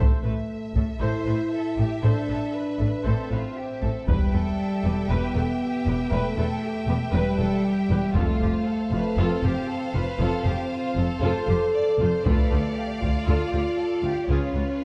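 A dark, warm production sits in a moderate scoring-stage reverb, giving this relentless, heroic cinematic excerpt a broad orchestral sheen. Up front, a French horn section holds sustained chords with a smooth top in classical style, while rich cello and double bass sections anchor the low end with even, bowed lines. A smooth viola section with vibrato fills in the accompaniment from a distance, joined by a distant, intense violin section carrying a second line above. From 1.0 s a close, focused violin section takes the melody, lush and clear with vibrato, after a taiko ensemble with heavy sticks lands its first vintage, band-limited hit at 0.8 s and returns in short bursts at the next three chord changes. The harmony moves from A minor through E minor, F and D minor before a C#7 arrives at 14.3 s, shortly before the excerpt is cut off.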